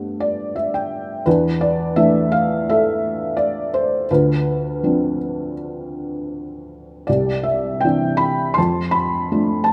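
Tender and warm, this short excerpt from a longer lyrical solo classical piece features a felt-muted upright piano, soft, mellow and intimate with audible action noise, placed up front in a moderate recital hall reverb, opening with a brief fill and moving through Gadd9, E7sus4, Dm7, Cadd9 and F6 at a rubato 79-85 BPM in 4/4.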